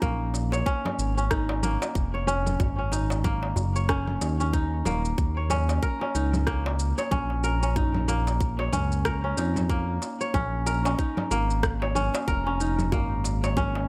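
Hypnotic organic downtempo at 93 BPM in 4/4 with a swung sixteenth-note feel, this excerpt sets a ringing, fingerpicked kora playing arpeggios up front through a low-pass filter and tape echo over a smooth, dark synth bass with sidechain pumping and a fast attack. A tight electronic kick and produced electronic congas, shaker and rim click sit in studio reverb, while a crisp, deep metal-shell darbuka played with hard hands enters at 0.3 seconds in the background. The harmony moves from Bbm7 through Ab5 and Eb5 before returning to Bbm7 and closing on Absus24, all within light reverb and small room ambience.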